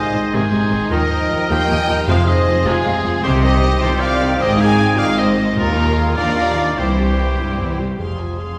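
Opening straight into a determined, swashbuckling passage cut from a longer heroic adventure film score in F dorian, at 102 BPM in a straight 6/8, a lush symphonic violin section carries the melody over a second violin section, a bright present oboe, a very quiet clarinet and a hollow, distant flute section, while mellow French horns and tight trombones sustain chords, a distant, roomy trumpet adds stabs, very quiet violas accompany, rich cellos and double basses hold the bass, and a round soft-mallet timpani stroke lands at 2.1 s, all moving through Ab, Ebsus2, Fm, Cm and a closing C to Fm in a reverberant recital hall.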